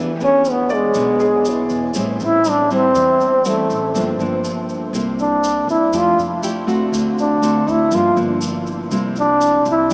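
A straight 4/4 bossa nova pulse at 121 BPM carries this sunny, romantic cut from a longer piece, lasting just under 10 seconds. A trombone takes the solo melody up front, its tone warm and jazz-styled with vibrato, yet set back in a roomy, distant space. Underneath, a fingerpicked nylon-string guitar supplies full-bodied, deep classical accompaniment with fresh strings and an audible finger squeak, while a woody, thumpy pizzicato upright bass on steel strings sits in the background. A grainy tube shaker joins at 0.2 seconds, and a smooth, vintage grand piano adds a brief accompanying touch from 0.7 to 2.2 seconds. The harmony moves from E7 through Am7 and a Gm7–C7 turn to Fmaj9 and D7 before returning to Gm7–C7, and the whole recording sounds as if played through a small speaker in a vast, echoing space drenched in long ambient reverb.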